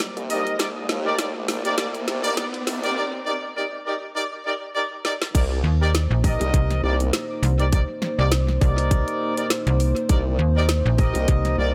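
The up-front formant-sweep wobble bass, saturated and wobbling with chorus, drives this gritty, funky glitch hop excerpt in C minor at 101 BPM, swung on the sixteenths and opening on a Cm9 chord. Around it, a tight electronic kick sits up front, while a drum kit with a woody snare, bright hats and crash cymbal carries analog delay, and an electronic riser runs through the build-up until 3.0 seconds, alongside a drum fill. Bright, close-miked horn stabs in a jazz style punch through with sidechain pumping and analog delay, over a deep, moody analog pad of detuned sustained chords with chorus and its own pumping. A break follows from 3.0 seconds, and shortly after the drop at 5.3 seconds, at 5.6 seconds, a snappy FM bass with a metallic, slap-like attack joins up front. The mix is echo-heavy with light reverb, giving the whole cut a small-room, produced character.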